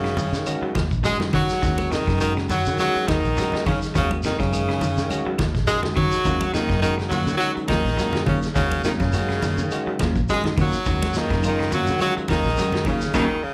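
An afrobeat groove at 104 BPM in 4/4, with a light sixteenth-note swing, drives this defiant excerpt in Eb minor. A vintage kit with a punchy kick and rolled-off top sits under a dark, round fingered bass, while hard-handed congas, a grainy shekere and very quiet woody claves fill the background. An edgy tenor saxophone carries the melody up front over a bright, scooped second tenor line, a barky overdriven tine electric piano, twangy picked guitar arpeggios and, from 6.3 s, dark fingered guitar stabs, all in club reverb through the venue's PA before a band accent at 13.2 s.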